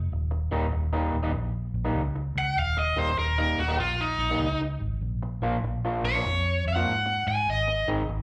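Muted, fingered electric bass opens this short, rollicking blues clip with a dark, round, punchy tone, joined at 0.3 seconds by a twangy, slightly broken-up, lo-fi electric guitar riff played through a small old amp with slapback echo. The groove moves at 98 BPM in 4/4 with a swung eighth-note feel, set in Eb mixolydian and tuned to A4 = 442 Hz. At 2.4 seconds an overdriven, picked electric guitar enters with a bright, gritty lead melody, also carrying slapback echo. The harmony sits on Eb7 before moving to Bb7 and then Ab near the end. Heard as a live club gig through the venue's PA, the sound has light club reverb and an up-front character, and the passage is cut from a longer piece.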